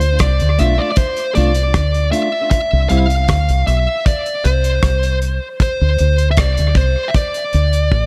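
A hazy, laid-back dub reggae excerpt opens with a dark, compressed fuzz lead guitar carrying the melody through distortion and tape echo, over a deep, foam-muted fingered bass that sits round and punchy up front, and a damped 70s drum kit of hi-hat, tight kick and rim click with a dry, rolled-off top. A clean, picked electric guitar adds tape-echoed accompaniment from 0.6 to 3.1 seconds as the chords move from Dm to C and then to D5. A drum fill at 7.9 seconds closes this short cut from a longer piece, all set in a small room ambience.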